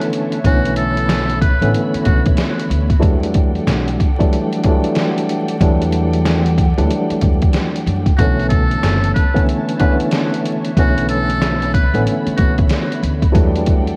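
A worn, slightly out-of-tune tine electric piano and a lush, bowed string section in the background open this reflective, gritty boom-bap hip-hop excerpt in B minor at 93 BPM, riding a compressed, pitched-down sampler-style drum kit with a thumpy kick and swung 16ths. A woody pizzicato upright bass enters at 0.4 seconds, and a buzzy, metal-muted jazz trumpet with light vibrato plays brief solo phrases, returning at 8.2 seconds through an analog delay. The harmony moves between Bm11 and Em11, and the whole home-recorded cassette sound carries vinyl crackle and a light studio reverb.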